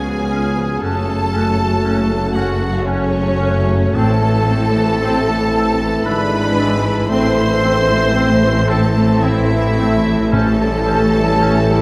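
In slow, rubato triple time at 57 BPM with uneven beats, this melancholic, solemn classical excerpt settles into A minor from 4.0 seconds, its lush bowed violins carrying the vibrato-rich melody over a second violin line, a distant oboe and a very quiet clarinet, with an airy, hollow flute ensemble floating high above. Beneath them, a close, very quiet viola section accompanies while punchy trombones and mellow French horns hold sustained chords in the background, and focused double basses and smooth cellos anchor the bass. Very quiet, dry timpani on calf heads enter at 10.3 seconds as the harmony turns to A7, all set in a vast cathedral reverb.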